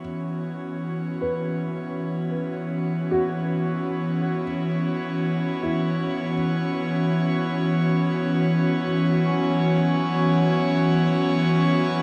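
Luminous and weightless, this free-time ambient fragment, cut from a longer piece, rests on a single F#7sus4 chord. A breathy, detuned synth pad with chorus sits up front and fades in across the full 12 seconds, while a felt-muted upright piano plays arpeggios in the background as it fades out; the piano is boxy and intimate, with audible action noise and tape echo. At 9.2 seconds a reedy, dark pedal harmonium adds a drone beneath, the mix soaked in cathedral reverb and a dreamy cassette-tape haze.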